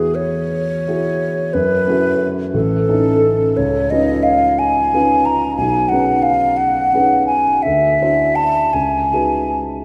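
Flute and grand piano begin together in this luminous, pastoral excerpt of impressionist classical music, moving at 59 beats per minute in dotted quarters within a 6/8 metre, with uneven beats and free rubato. The silver concert flute carries the melody between G#4 and A#5, its straight, airy tone sitting up front, with a crisp attack and a hollow, metallic edge. Beneath it, the warm grand piano supplies the accompaniment, spanning A1 to C5, also close and present. The harmony drifts through colourful extended chords, opening on E6/9 and passing through F#m7, A, C#9, B6/9 and D9 before coming to rest on C#9sus4 near 8.7 seconds. A wet church reverb with a long 3.6-second decay surrounds the duo, and the tuning sits at A4 = 442 Hz.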